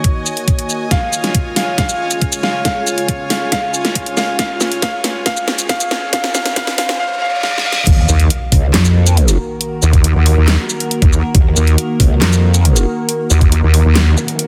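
A half-time 4/4 pulse drives this aggressive, heavy wobble dubstep excerpt, which opens with a soft felt-muted upright piano melody in dub echo over an evolving, detuned wavetable pad with sidechain pumping and filter sweep, smooth bowed chamber strings, a knocking electronic kick and a dubstep drum kit with a huge snare, as drum fills build alongside a riser and a reverse cymbal in the background until the drop at 7.9 s brings a saturated growl bass and a nasal vowel-sweep wobble bass up front, with an impact and a zap among the effects.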